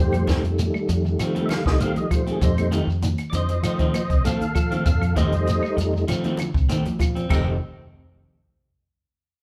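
Hypnotic, funky afrobeat at 98 BPM in F mixolydian, cut from a longer piece, where an up-front, mellow tonewheel organ with key click, percussive third-harmonic attack, chorus vibrato and slow rotary speaker takes a solo over an F7 chord, backed by a round, punchy fingered bass, clean picked guitar arpeggios in the background, slightly broken-up guitar stabs, a cocktail kit recorded in a tight booth with a high-tuned snare and dark cymbals that plays a fill from 6.7 to 7.3 seconds, ringing high-tuned congas, woody claves and a grainy, dry shekere, all played live in one room with light reverb.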